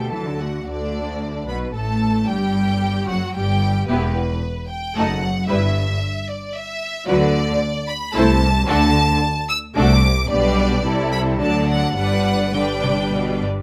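In a rubato 3/4 at 112 BPM, this quick, cheerful classical-period movement for string orchestra in G major opens with every section playing at once: clear first violins carry the melody with vibrato, ranging from B4 to E6, while focused, distant second violins trace a supporting line. Lush violas fill in the accompaniment, and the cello section, with its smooth top, pairs with lightly vibrating double basses reaching down to E1 to anchor the bass. The spirited harmony moves through E minor and a diminished chord before settling on G at 12.0 seconds, with the cellos sounding until 13.6 seconds in a dry, closely captured studio sound.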